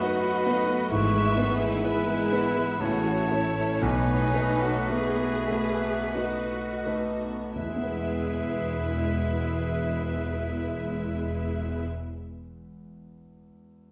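In 3/4 with free rubato, this passage from a romantic movement for piano and orchestra in E major moves between 42 and 68 BPM, slowing over its first 7.6 seconds before settling onto an E major chord at 7.6 seconds. The mood is lyrical and passionate, with the grand piano carrying the melody from deep bass to its upper register in a smooth, vintage tone with long sustain. A lush violin section also carries the melody softly in the background, and the piano lingers alone until 13.9 seconds. Around them, a second violin section, a hollow, airy silver flute with lifted highs, a distant, roomy oboe and a soft-attacked clarinet weave second lines. A focused viola section supplies accompaniment, and very quiet dark French horns and mellow trombones hold sustained chords beneath. A clear cello section and a double bass section, entering at 0.9 seconds, anchor the bass, all heard in a wet recital hall with a dark, warm production.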